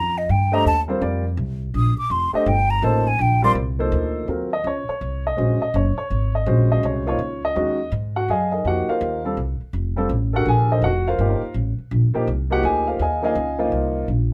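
Modal jazz in a swung 3/4 with a spiritual, intense mood, this excerpt opens on a breathy, hollow silver concert flute singing a close-miked, vibrato-touched solo that stops at 3.5 seconds, over a woody pizzicato upright bass and an upright piano whose long-sustained chords arrive at 0.5 seconds and alternate between F9sus4 and Eb9sus4, all placed up front in light reverb.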